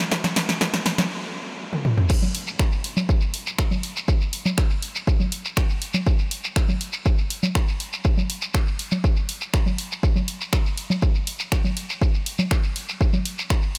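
Techno cut from a longer piece, driving and cinematic, where a punchy analog kick and a drum machine of congas, snare, toms, hi-hat, ride, crash and finger snaps, both up front with a small-room character, open with a build-up of drum fills broken by a stop before the drop at 2.1 seconds brings in a grainy, mellow shekere heard close and dry under light reverb.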